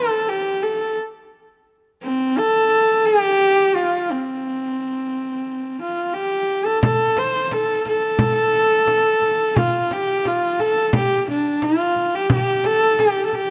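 A lone horsehead fiddle opens this Mongolian folk passage at 87 BPM in a straight 4/4, its husky, earthy tone sitting up front and moving between C4 and C5 with light vibrato, portamento and an airy bow, tuned to A4 = 439 Hz. At 6.8 seconds a small, bright frame drum played with soft hands joins, close and dry beneath the melody, in keeping with the vast, galloping mood. Close, detailed microphones and light reverb frame this short section cut from a longer piece.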